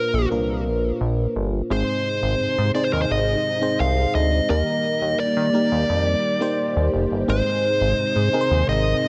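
Set in a light digital ambience, this glossy, romantic pop excerpt opens with a dark, overdriven lead guitar carrying the melody up front through digital delay, over a glassy, bell-like FM electric piano treated with chorus and phaser. A retro, nasal synth bass with a filter pluck and chorus sits prominently underneath. At 1.7 s a mellow string-machine cello part enters in the background, adding full, sustained chords with a soft attack and ensemble chorus.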